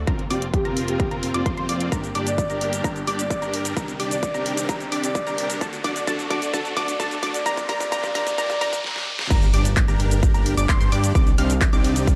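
A punchy, up-front electronic kick drives this powerful, euphoric festival progressive house build-up in G minor at 130 BPM, joined by an overdriven pop drum kit with a deep snare, handclaps, hi-hat, cabasa and crash, a fat saturated analog bass, a huge dense supersaw riff and lush unison pluck arpeggios that both pump with sidechain and carry tape echo, a breathy flute-like synth lead with chorus, and a dark, woody string section in the background, all rising under a riser and filter sweeps until the strings and lead drop out at 8.8 seconds and the drop lands with an impact at 9.3 seconds in a dark production with light digital ambience.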